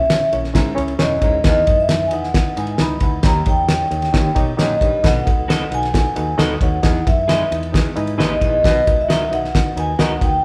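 Driving at 134 BPM in a straight 4/4, this uptempo 1960s-style soul excerpt feels passionate as a cloth-damped, thuddy drum kit with a fat snare, tight kick and dark ride cymbal sits up front beside a round, foam-muted fingered electric bass. A mellow, ringing vibraphone played with soft mallets carries the melody over a reedy electric piano pulsing with fast tremolo, while a smooth-topped baritone saxophone riffs in the background from 0.6 to 8.8 seconds and a slightly broken-up electric guitar through a small old amp adds stabs from 5.5 seconds. The band sounds live in one large room with moderate reverb and vinyl crackle, moving through chords such as A#m7b5, Emaj7, D#7 and B7 before settling on Bmaj7.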